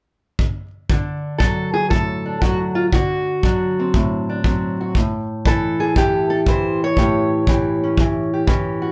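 Light reverb and a live, one-room sound frame this short, laid-back and rollicking slice of acoustic country blues, swinging at 119 BPM in D major. A tight, up-front kick drum with brushes starts at 0.4 s. At 0.9 s a dark, boxy parlour steel-string guitar joins, fingerpicking the melody across a range of A2 to C#5 over a D7 chord that moves to A7 at 4.9 s.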